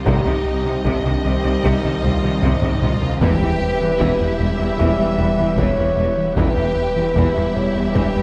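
Heard through moderate scoring-stage reverb, this futuristic, relentless cinematic film score cut blends orchestra and electronics at 76 BPM in 4/4, moving from Cm to Em as dark French horns hold chords over a distant, expressive violin melody, a lush second violin line, smooth violas, focused cellos and a studio double bass section, a warm trombone section, a very quiet swarming, warbling drone, a mellow harp-like synth pluck playing arpeggios, a round analog bass riff, a growling distorted saw bass, and a large-room taiko ensemble with hard sticks that plays a fill from 2.4 to 3.2 seconds.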